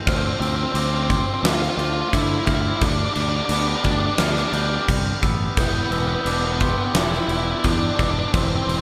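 Soft, bell-like glockenspiel and a clean, twangy electric guitar open this brooding, cathartic post-rock excerpt with echo-laden arpeggios in the background, joined at 0.1 seconds by a dark, fuzzed-out lead guitar melody up front, a growling overdriven fingered bass and a barely audible, reedy harmonium breathing sustained chords. A huge arena drum kit drives the straight 87 BPM 4/4 pulse with a punchy kick, fat snare and crashing cymbals, while the harmony moves from Dm7 to G/D to Em7. A lush hall reverb gives the whole mix a big arena sound.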